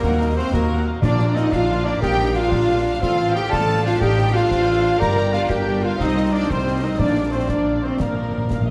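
This heroic, adventurous film-score passage, cut from a longer piece, opens with everything but the timpani at once, in Bb major and 12/8 at 121 BPM. A clear, intense violin section carries the melody from a distant place in the background. A second, very quiet violin section, an airy flute, a mellow clarinet and a smooth-topped cor anglais weave supporting lines, while a lush viola section fills out the accompaniment. A roomy French horn section holds sustained chords, and bright trumpets add stabs in the background. Cellos and an up-front, expressive double bass section anchor the low end, with snare, bass drum and dark clash cymbals sounding close and dry. Round, soft-mallet timpani strike at 1.0 seconds and return at 7.0 seconds, leading into a fill from 8.0 seconds, while a scoring-stage reverb surrounds the orchestra as the chords move from Ebmadd9 through Bb, F/A, Gm and Cm7 back to Bb.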